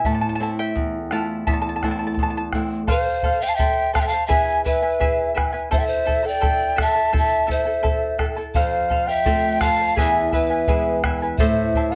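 This Andean folk piece, cut from a longer work, is melancholic and wistful, moving at 85 BPM in a straight 2/4 in A harmonic minor, tuned to A4 = 436 Hz. It opens with a charango solo, the fingerpicked double strings sounding mellow and shimmering with some octave-doubled courses, supported by a dark, fingerpicked flamenco guitar and a round, up-front bombo drum. At 2.9 seconds the guitar drops out and a large wooden quena takes the melody, its end-blown tone breathy with vibrato, a soft attack and rolled-off highs. Beneath it a bamboo pan flute carries a second line in a straight, tongued tone with a hollow chiff. The guitar returns at 8.6 seconds as the harmony cycles through Am, F and E back to Am, all set in a moderate studio reverb.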